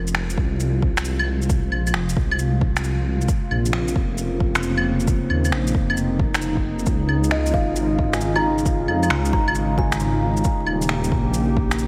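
A heavily swung sixteenth-note groove in 4/4 drives this melancholic, nocturnal future garage fragment, with an electronic shaker, finger snaps and claves ticking from the start and a deep, layered electronic kick arriving at 0.4 seconds. Beneath them, a dark, detuned sawtooth bass rumbles and beats, pumping with sidechain compression, while a warbling, nostalgic tape-like pad holds mellow, lo-fi chords thick with chorus and its own reverb, also breathing with that sidechain pulse. The harmony moves slowly from Fm through Bbmadd9 and Dbadd9 to Eb7. At 7.3 seconds a woody, ringing kalimba enters with a brief melody high above, trailed by tape echo. The whole mix is dreamy and soaked in a cathedral-sized reverb, with vinyl crackle adding a vintage haze to this cut from a longer piece.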